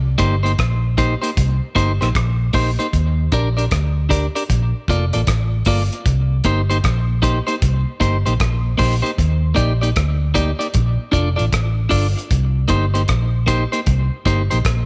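A dark, round, foam-muted electric bass opens this meditative roots reggae excerpt in C dorian at 77 BPM, sitting up front with a swung sixteenth-note feel over a cycle of Cm7, Ebmaj7 and Bbmaj7. At 0.2 seconds a cloth-damped, thuddy drum kit with a tight kick, hi-hat and rim click joins, its top rolled off in a small room. A clean, picked and compressed electric guitar carrying a dub echo fills out the hypnotic groove, all set in light reverb.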